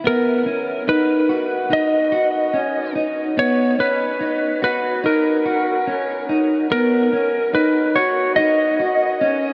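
Straight and steady in 4/4, this short dream pop fragment drifts in an ethereal haze as a dark, mellow electric guitar plays fingered arpeggios over a lone Bmaj9 chord through lush chorus, shimmer reverb and tape echo, while from 0.1 s a compressed, twangy lap steel sings a clean slide melody with its own shimmer and echo, both sitting up front in a huge, reverb-soaked space.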